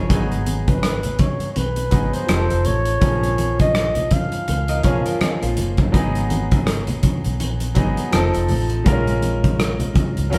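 A breathy flugelhorn with light vibrato carries the jazz-style melody until 5.6 seconds in this smooth, silky excerpt of lush 1970s-style soul with a gentle sixteenth-note swing, over a clear, intimate baby grand piano with audible action noise, a round, punchy foam-muted electric bass, a dark, up-front studio drum kit with a tight kick, hi-hat and rim clicks, soft-handed low-tuned congas in the background, and a slightly broken-up, lo-fi guitar riff that flickers briefly at the very start and resurfaces around 4.7 seconds, all played live together in a stone room with moderate reverb.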